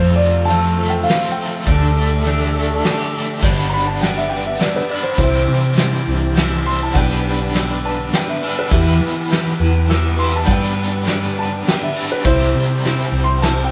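Hopeful and open-road in feel, this folk rock and heartland rock cut from a longer piece moves at 102 BPM in a straight 3/4 in G major, with a mellow concert grand piano carrying the melody only until 2.8 seconds before a dark, woody, slightly detuned upright piano takes over with a solo from 3.7 seconds. Underneath, a bright, shimmering, octave-doubled twelve-string acoustic guitar with audible finger squeak picks out accompaniment, an overdriven, double-tracked electric guitar with tremolo plays a riff, and a round, amped hollow-body short-scale bass sits up front. A soft brush kit with a fat snare and punchy kick joins at 0.5 seconds, while a fat tonewheel organ with key click and slow rotary speaker holds chords in the background, the band sharing one room with moderate reverb over chords moving from F and Dsus4 through G, C, G/B and Em.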